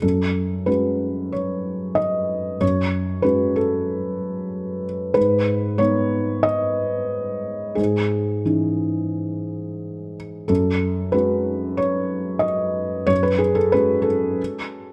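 Neoclassical minimalist piano in F# dorian, intimate and melancholic, drifts in a rubato 4/4 around 92 BPM as a solo felt-muted upright piano, dark and up front with thick felt and audible action noise, moves through F#madd9, G#m and C#madd9/G# before its opening material returns at 10.5 s, captured by close, detailed microphones with light reverb in this short fragment of a longer piece.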